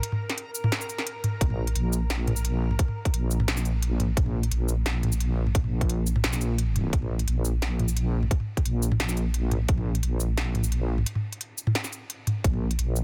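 This tense, spacious half-time drum and bass opens on a reversed, dreamy, detuned swelling texture over an industrial drum kit with a clanging snare, crisp hats, shaker and toms. At 1.4 seconds the drop arrives with a tight, layered electronic kick and a deep, dark wobble bass that blends sawtooth and sine tones, thickened by chorus and tube saturation. The kick falls away at 9.8 seconds, and a break follows from 11.1 seconds before the dense, heavily limited mix carries on.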